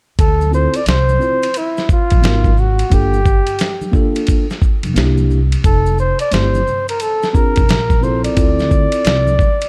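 A dark, warm studio sound frames this short excerpt of smoky, cool jazz-hop in D minor, moving at 88 BPM in 4/4 with a 16th-note swing. Up front, a gritty, compressed sampler-style drum kit with a thumpy kick, medium-tuned snare, hi-hat and ride cymbal carries the small-room character of being re-recorded, and it runs from 0.2 to 9.7 seconds. A woody, pizzicato upright bass with steel strings holds the low end between F1 and D2, while a mellow tine electric piano, clean and played through its built-in speakers, enters at 0.5 seconds. The breathy flugelhorn takes the solo melody up front, jazz-style, with a soft attack and light vibrato, ranging from E4 to D5. Bright, saturated maracas and congas played with soft hands sit in the background, and the harmony travels from Dm7 through G#m7, Gm7, C9, Fmaj9 and Bbsus2 before returning to Dm7.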